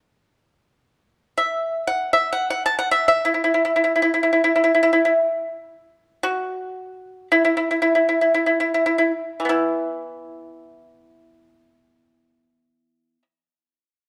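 Unfolding in free time, this serene, flowing Chinese traditional excerpt for solo plucked strings gradually slows through its opening passage, easing toward a new passage that begins at 9.5 seconds. A lone pipa, played with fingerpicks, enters at 1.4 seconds and carries the music until 13.2 seconds, ranging from E3 to A5. Its tone is bright, dry and percussive, and it sits up front in the mix. Around it, a moderate recital-hall reverb lends a sense of space, and the overall production leans dark and warm. The result feels calm and unhurried, a brief glimpse cut from a longer piece.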